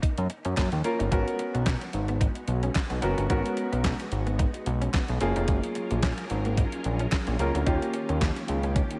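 Danceable and slick, this early-eighties boogie funk excerpt rides a clean 12-bit drum machine with a thumpy kick and fat snare. Up front beside it sit a thick, nasal, saturated analog bass entering at 0.2 s and a clear, intimate grand piano with audible action noise. Further back, a compressed semi-hollow electric guitar plays a riff with subtle chorus, a very quiet group handclap adds crisp human texture, and a silky, warbling string machine arrives at 1.8 s with sustained chords in ensemble chorus. A lush hall reverb soaks the mix in a dreamy haze over a swung sixteenth-note feel, with chords moving from F#maj7 through G#m11, back to F#maj7 and on to D#9.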